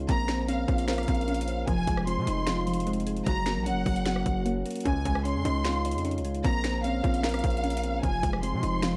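A distorted 808-style bass sits up front in this brooding, dark trap excerpt, its heavy, saturated sine tone carrying a gritty noise layer from F1 up to C3. Around it, soft electric-piano-like synth keys lay down round, gentle chords treated with chorus, moving through Bbmadd9, Fm7, Gb and Dbadd9 in F phrygian. A glassy wavetable pluck spins crystalline arpeggios in the background, colored by chorus, tape echo and a filter sweep. From 0.1 seconds, a distant studio violin section adds a lush, expressive second line high in the register, bowed with vibrato and trailed by tape echo. The trap kit joins at the same moment, its hard-clipped kick, sharp snare, metallic hats, rim clicks and finger snaps driving a half-time feel at 151 BPM, all captured in a dry, rough hardware recording with little reverb.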